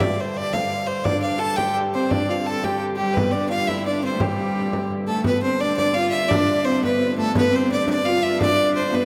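A biting, airy-bowed fiddle carries the melody up front in this festive medieval dance in 6/8, its clear tone touched by light vibrato and an earthy edge. Underneath, a rich hurdy-gurdy holds a smooth, even drone low in the range, and a frame drum adds a compressed, saturated pulse from the start. At 1.1 s a fretted viola da gamba joins with a second line, its reedy gut-string tone ringing in period style just beneath the fiddle. The tune moves into a new section at 5.3 s, and the whole excerpt, cut from a longer piece, sits in a vast, echoing cathedral reverb that gives the straight-feel dance an ancient glow.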